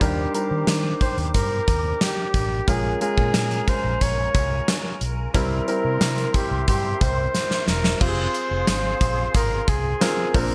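A bright, glossy 1980s-style digital production with light studio reverb frames this romantic pop excerpt at 90 BPM, where a solo flugelhorn sings the melody with vibrato and scooped notes over a dark, mellow grand piano and a round, foam-muted electric bass. A large flute ensemble holds airy sustained chords in the distant background, while an up-front, polished drum kit with a fat snare, punchy kick, crash and hi-hat rings through gated reverb, joined by a very quiet, jingly tambourine. A drum fill at 7.3 seconds leads into a new section at 8.0 seconds as the harmony settles on Fm.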